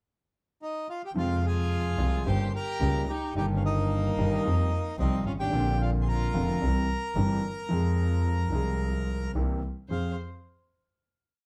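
Dramatic and passionate, this short tango in F minor moves at a rubato 110 BPM, with a reedy, dark bandoneon singing motif-based song phrases partly doubled in octaves over an intimate concert grand piano with audible action noise and a rich bowed double bass, both pulsing in uneven groups of three and two eighths, while a bowed violin with vibrato and portamento adds a harmony line mostly in thirds until 6.6 seconds and returns at 9.9 seconds for the final F minor chord in a moderate studio reverb.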